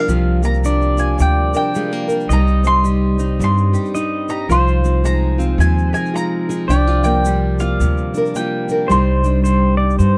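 Melancholic and wistful, this brief excerpt of acoustic folk for a small band moves at 109 BPM in C minor with a swung eighth-note feel, its mellow, round mandolin carrying the melody in plate reverb while a clean, compressed pedal steel guitar, played with fingerpicks and slide, adds a second line of volume swells. A fingerpicked nylon-string guitar with fresh strings gives small, bright accompaniment, a plugged-in steel-string acoustic guitar picks arpeggios with audible finger squeak, and a woody, growly upright bass sits up front alongside a grainy, close egg shaker from 0.1 seconds. The production is dark with light reverb as the harmony drifts around C minor chords, settling on Cmadd9 at 8.9 seconds.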